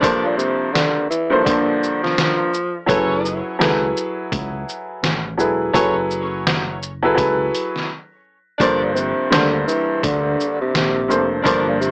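A dry, gritty, small-speaker sound frames this reflective boom-bap hip-hop excerpt at 84 BPM with a swung feel, where a woody upright piano with cassette-tape colour and a compressed, pitched-down sampler-style drum kit with a thumpy kick and shaker play throughout, an edgy saxophone section adds tape-echoed stabs, a breathy, raspy tenor saxophone growls the melody with scooped notes in two passages, and a round, dark dub bass enters at 2.9 seconds beneath chords shifting from Gm11 to F#m11 and back.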